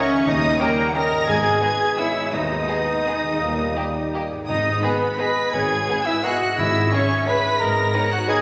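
Classical orchestral excerpt in G# minor, bittersweet and sweeping, moving in a rubato 3/4 at around 158-194 BPM: a lush, intense violin section carries the melody above second lines from a pure, expressive flute, a mellow cor anglais, rich chamber violins and a roomy clarinet, while a distant viola section accompanies, very quiet trombone and French horn sections hold sustained chords, a ringing fingerpicked harp plays arpeggios, double basses, a faint cello section and calf-headed timpani anchor the low end, and a close-miked bassoon joins briefly at 2.7 s, all set in a wet scoring-stage reverb.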